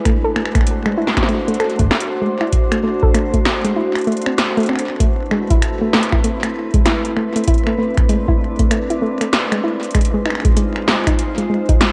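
IDM with an eerie, intricate mood, moving with a swung sixteenth-note feel in 4/4. A glassy, ethereal FM pad holds slow-blooming chords in ensemble chorus and its own reverb, while a soft, round pluck with a dark, gentle tone spins arpeggios through chorus and delay. Up front sit a deep analog kick and a drum machine of punchy snare, metallic hats and finger snaps, its hits trailed by delay and given the flavour of a small room. The harmony shifts from D7 to Amadd9 around 5.0 seconds, then to Fm7 near 9.9 seconds. A lush hall reverb and the warbling pitch drift of worn cassette tape colour the whole sound of this fragment cut from a longer piece.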